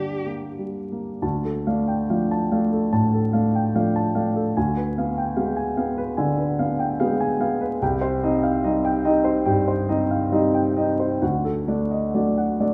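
A smooth, vintage-toned grand piano sits up front from the opening moment, playing a melancholic, yearning classical passage at around 72 BPM in 4/4, its beats uneven with a free rubato feel. The harmony moves from G minor through D minor, a diminished chord and C minor before settling on D major at 11.2 seconds, with the piano spanning from deep bass to the upper middle register. A wet recital-hall reverb and a layer of vinyl crackle give this excerpt, cut from a longer piece, an aged, intimate atmosphere.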